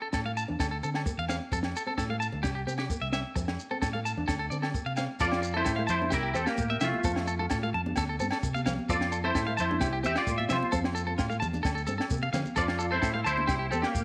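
A lightly reverberant studio sound frames this carefree, danceable highlife guitar band piece in 4/4, which cycles through Dm, F and C. Up front, a twangy, compressed clean electric guitar plays arpeggios with slapback echo over a round, amped fingered bass and a dark, rolled-off compact cocktail kit with punchy kick, high-tuned snare and crash. A grainy shekere adds texture, while ringing agogo bells and a small fingerpicked nylon-string guitar sit in the background; at 5.2 seconds a bright, hollow-bodied semi-hollow electric guitar takes the melody with ensemble chorus, and from 5.9 seconds thin-skinned, high-tuned congas join further back.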